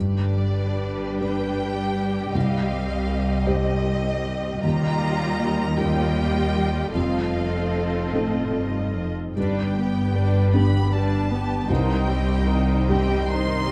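A dark, warm production places strings, harp and piano on a scoring stage with a moderate 1.6-second reverb. This cinematic, emotional film cue moves in a slow, rubato 6/8 at about 51 dotted-quarter beats per minute, and its uneven pulse gives the 13.7-second passage, cut from a longer piece, a tender and uplifting feel. One violin section carries the melody with a rich, focused vibrato, while a second, lusher violin section sings an expressive line beneath it. The violas fill out the accompaniment with vibrato and touches of portamento. In the background, a felt-muted upright piano adds mellow, soft accompaniment with audible action noise, and a very quiet concert harp rings out thumb-plucked arpeggios. Cello and double bass sections anchor the low end with smooth-topped bowed tone as the harmony moves from G through C minor, E-flat add9 and F7 before returning to G and C minor.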